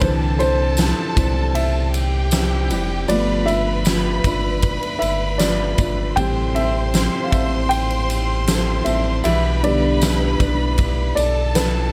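This pop ballad fragment, cut from a longer piece, carries a heartbroken, melancholic mood in a straight 4/4. A dark upright piano takes the solo throughout, its woody, boxy, mellow tone leading over chords that move from Cmaj7 through G7 and Am7 to Em7/B. Beneath it, a deep sine-and-triangle sub bass with an added octave sits up front with a fast attack and sustained notes, while a big-room acoustic drum kit brings a punchy kick, a fat snare and ride cymbal. A fingerpicked jumbo steel-string guitar plays full-bodied arpeggios in the background with audible finger squeak, and a jingly tambourine enters at 0.4 seconds, close yet tucked behind the other parts. A distant, lush violin section adds an expressive bowed second line with vibrato, and light reverb with small room ambience surrounds the sound.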